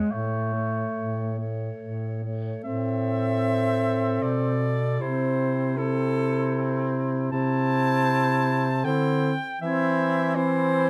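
Serene and lyrical, this classical piece for single-reed quartet moves in a rubato triple metre and is cut from a longer work. A warm, close-miked soprano saxophone sings the melody up front with vibrato and a soft attack, over a clear, vintage-toned clarinet on the second line and a mellow, roomy tenor saxophone whose vibrato colours the accompaniment. A bass clarinet anchors the low end from 0.1 s, and light reverb gives the quartet a gentle sense of space.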